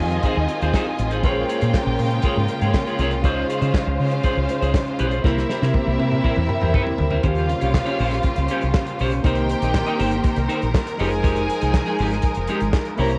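A home cassette recording with light reverb carries this glamorous, driving disco passage, cut from a longer piece, where a tight soul drum kit with handclaps, hi-hat, kick, snare and toms plays beside a dark, round, punchy fingered electric bass that sits up front. Lush bowed violin and string sections hold smooth vibrato chords and a second line, while a clean picked electric guitar and a very quiet, open concert grand piano with long sustain fill out the accompaniment. The drums play a fill from 5.2 seconds and the piano adds its own at 6.2, leading into a new section at 7.2 seconds as the harmony moves from Fm7 toward Fm9.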